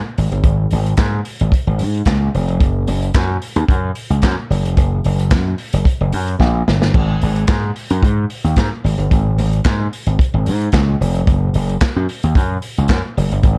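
A gritty slap bass anchors this short disco excerpt, its electric tone bright, punchy and overdriven, sitting up front from 0.2 s to the cut at 13.6 s. Beside it, a vintage acoustic drum kit plays in a straight 4/4 at 111 BPM, with a punchy kick, a medium-tuned snare, hi-hat, handclaps and dark crash cymbals heard in a small room. The kit has a rolled-off top and sits up front as well, and a short drum fill breaks in at 6.4 s. The mood is driving and danceable throughout this single section. The production is dark and dry, with little reverb.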